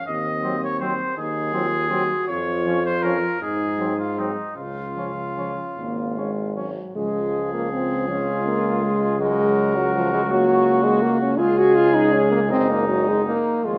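Triumphant and warm, this classical brass quintet passage unfolds in 6/8 with a flexible, rubato feel. The trumpet carries the melody from a distant, roomy position, while the flugelhorn adds a second line with a light vibrato and a vintage colour. The French horn sits most prominently in the blend as accompaniment, and the trombone, close-miked, joins it in the middle register from 0.4 seconds. The tuba anchors the bass with an aged, banded tone. Every horn is clear-toned, set in a recital hall with moderate reverb, and the harmony moves from Ab7/Eb through Db, then the music passes into a second section at 7 seconds and reaches a Gb/Db colour around 9.2 seconds, ending on Ebm/Gb in this fragment cut from a longer piece.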